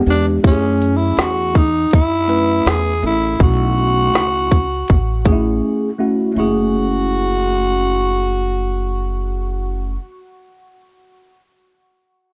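Dark production with modest studio reverb frames this cool, mellow jazz-hop excerpt, where a breathy, raspy tenor saxophone with analog delay carries the swung melody over worn, slightly out-of-tune tine electric piano chords colored by overdrive and phaser, a thumpy gut-string upright bass, and a tight organic electronic drum kit with a woody snare, crisp hats and shaker that drops out at 5.5 seconds, leaving sax, piano and bass to close the passage.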